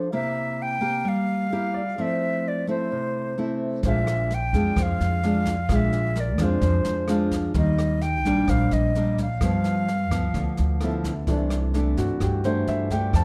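Sophisticated and relaxed, this bossa nova piece moves at 129 BPM in a straight 4/4, cut from a longer performance. A fingerpicked nylon-string guitar sits up front with a full-bodied classical tone, fresh strings and audible finger squeak, while a smooth, vintage-sounding grand piano fills in the accompaniment. With them a reedy concert flute carries the melody with an airy, straight, tongued tone, set close and touched with plate reverb. At 3.8 seconds an upright bass enters, woody and dark, alongside a brushed drum kit with a boomy kick, rim clicks and a medium-tuned snare. The harmony moves through C7, Fmaj7, Bb7, Ebmaj7 and G13 before the piano takes a brief solo at 11.3 seconds over C69. A light room reverb and a faint mains hum colour the whole recording.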